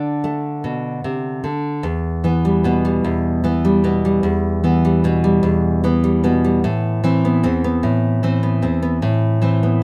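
A slow 6/8 pulse at 50 beats per minute, counted in dotted quarters with a straight feel, carries this melancholic, reflective folk piece in E minor, cut from a longer work. A lone nylon-string guitar plays throughout, fingerpicked and sitting up front, its tone bright yet full-bodied with a deep classical character as it ranges from low E2 up to D4. The opening moments rest on a D5 chord before the music settles onto E minor at 1.8 seconds, marking the shift into a new section. At 6.6 seconds the harmony moves to an Amadd9 chord, deepening the wistful, introspective mood. The guitar is heard in a moderate studio ambience with a short, natural-sounding reverberation that keeps the intimate playing clear and close.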